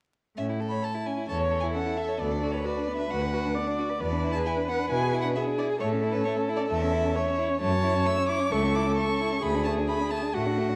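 At 0.4 s two violins and a cello begin together in this spirited, graceful classical-period string quartet movement in A major, moving at a quick 132 BPM in straight 4/4. The first violin carries a rich, expressive melody with vibrato, soft attack and portamento over a clear, focused second line, while the cello holds a smooth, even bass with light vibrato, and the viola joins up front at 1.3 s with a close accompaniment as the harmony passes from A through Bm/D and E7 back to A, then F#m7 and D. The quartet sounds through a wet recital-hall reverb with a layer of vinyl crackle, in a passage cut from a longer piece.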